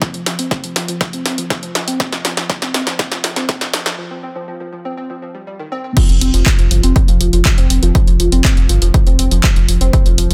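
A woody, wave-folded synth pluck carries this dramatic, melancholic melodic techno excerpt, its dark, full-bodied arpeggios colored by ensemble chorus, tape echo and sidechain pumping while a filter sweep moves across it during the opening build-up. Underneath, a punchy electronic kick drum and an up-front analog drum machine supply crash cymbal, handclaps, hi-hat and snare, with a short small-room ambience on the snare, clap and hats and a tape-tinged character. The first 6.0 seconds build tension with a drum fill and then a brief break, before the drop lands on an F5 chord. At 6.1 seconds a round, deep analog bass enters with a nasal edge, sustaining its low notes and pumping under the sidechain. The mix is dry, dense and heavily limited in a modern style.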